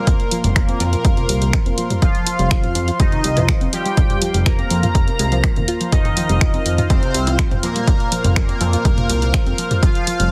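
A steady, straight pulse from an up-front, punchy electronic kick and a tape-warm analog drum machine with finger snaps, hi-hat, toms and a softly clipped snare drives this melancholic, hypnotic melodic techno excerpt, where a fat, saturated analog bass, a bright, juicy resonant sweep polysynth melody with chorus and delay, a smooth supersaw second line through cassette tape and tape echo, a background pad of sustained chords, mellow round pluck arpeggios and very quiet dark dub chord stabs with phaser all sit in a dense, heavily limited, nearly dry mix that pumps with sidechain.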